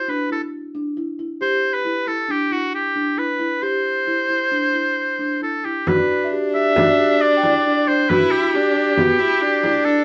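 In a straight five-four pulse, this shimmering, hopeful contemporary chamber piece, cut from a longer work, sets a clear oboe melody with light vibrato up front over round, woody marimba arpeggios played with soft mallets, moving from D9sus4 to Gmaj7 at 5.9 s, where an expressive bowed viola with portamento adds a close second line and a vintage, band-limited frame drum enters, while a bell-like, slightly out-of-tune celesta glints in the background from 6.2 s to 8.1 s, the whole set in a wet studio reverb.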